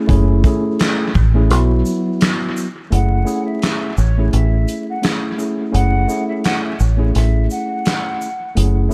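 Boom-bap hip-hop at 85 BPM in F# minor, with a lightly swung sixteenth feel and a reflective yet tough mood, built on a worn, slightly out-of-tune tine electric piano that sounds lightly overdriven and tape-worn, moving from F#m7 to Bsus4 over a dark, round and punchy fingered electric bass. A distant, roomy soul drum kit with a tight kick, medium-tuned snare, hi-hat, shaker and handclaps carries analog delay, while vinyl crackle and an echo-heavy small-room sound surround the mix. At 2.9 seconds a break begins and a breathy, hollow jazz flute enters with vibrato and tongued notes, distant and delayed, playing until 8.5 seconds in this fragment of a longer piece.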